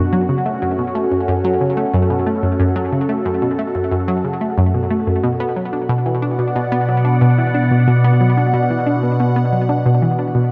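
Expansive and hypnotic, this short passage of ambient, sequencer-driven space music moves at a steady, straight pulse in 4/4, with its tuning set slightly below standard pitch. A phased analog pad holds sustained chords from the very start, its detuned sawtooth tone swirling and airy, with a breath of noise, a slow attack and a long release, sitting up front and bathed in phaser, chorus and shimmer reverb. An analog pluck enters at 0.1 s with a repeating riff in the low-to-middle register, round and nasal yet bright, its sawtooth sound shaped by a filter pluck with a fast attack and short decay, dressed in chorus, phaser and delay. The harmony rests on F#m before shifting to Bm at 5.2 s, and both parts carry on through to the end of this brief section cut from a longer piece. A moderate plate reverb with a 3.2-second tail gives the whole a spacious, floating depth.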